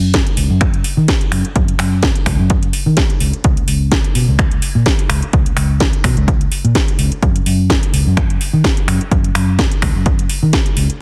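A dark, round, foam-muted electric bass opens this sunny, feel-good filtered disco house piece, its low-pass filtered tone pumping from sidechain compression; at 0.1 seconds it is joined by an overdriven, punchy electronic kick placed up front and a layered, overdriven house kit of finger snaps, pumping metallic hi-hats and a cracking snare, both drum parts re-recorded in a large room, and the whole mix, set on swung sixteenths, carries a heavily compressed, radio-like sound with little reverb.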